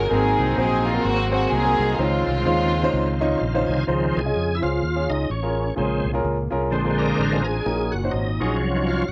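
Floating, soft-attack strings carry the melody over bright, shouting tonewheel organ chords with slow rotary speaker and punchy, up-front fingered electric bass as this soulful, hopeful uptempo gospel excerpt opens at 127 BPM in swung 4/4 in Db major, joined by an intimate concert grand piano with audible action noise and long sustain, before the strings drop out at 3.4 s and the organ moves from a fill into a solo at 3.9 s, while a twangy, compressed electric guitar slips in quietly in the background at 6.7 s, all captured at home on cassette in a booth.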